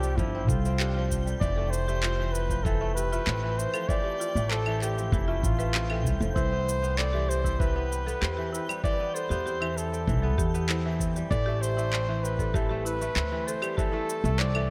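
A straight 4/4 groove at 97 BPM, built on a muffled, thumpy electronic kick from 0.2 s and overdriven electronic shaker, handclaps and claves, carries this pastoral, delicate folktronica piece. Over it, a warm, up-front flugelhorn sings the melody with light vibrato and scooped notes through delay, above ringing, crisp kora arpeggios, a woody pizzicato upright bass on gut strings, a buzzing, bright marimba second line tucked in the background, and a twinkling granular texture with octave-up shimmer, the whole mix soaked in dreamy hall reverb as the chords move from G7sus4 through Fmaj7 and Cmaj7 to Am7.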